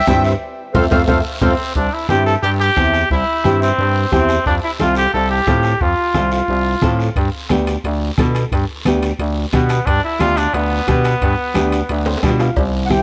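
A sweet, reedy accordion with light tremolo tuning opens this festive, danceable cumbia at 178 BPM before a band accent and drum fill lead into a punchy, vibrato-laden trumpet solo from 1.8 to 12.6 seconds, carried over a dark fingerpicked flamenco guitar, a thick growling FM bass up front, a soft-beater bombo, background congas, ringing cowbell and timbales, and a raspy guiro, all in light reverb.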